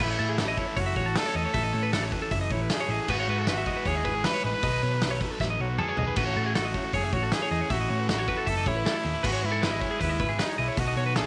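Bright and intricate, this math rock and midwest emo excerpt centres on a clear, close-miked trumpet melody with vibrato, scooped notes and tape echo, over chords moving from A6 through Emaj7/G# and B7. A twelve-string electric guitar plays twangy, compressed arpeggios with a warbly pitch drift, an overdriven, double-tracked semi-hollow guitar plays a riff in the background, and a slightly broken-up, lo-fi guitar through a small old amp sounds very quietly only until 1.5 s. A round, punchy hollow-body short-scale bass anchors the low end, while the loose, roomy indie drum kit with dark cymbals enters at 0.4 s and plays a fill at 5.4 s, in a dry mix with little reverb.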